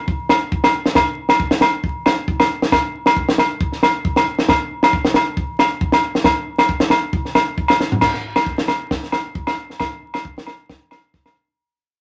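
A compact cocktail drum kit sits up front in this joyful, carefree highlife groove at 136 BPM in 4/4, its dark, smooth sound built from a punchy kick, a high-tuned snare, toms and crash cymbal, all with a light sixteenth-note swing. Ringing agogo bells, close and dry, join at 0.3 seconds, while a moderate club reverb and a layer of vinyl crackle frame the pair. A drum fill at 7.8 seconds leads into a second section that fades out from 8.0 to 11.6 seconds, as this short cut from a longer piece slips away.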